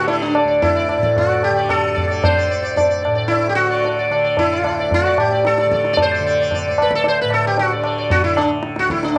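Hindustani classical music in raga khamaj, radiant and devotional, moving at 112 BPM in seven beats per bar, with an up-front, bright sitar carrying the melody between D4 and D5, its plucked strings buzzing and ringing sympathetically, over a softer, warm tanpura drone low in the D2 to D3 range and a high-tuned tabla with a short ring entering at 0.1 seconds, all set in light studio reverb in this short excerpt cut from a longer piece.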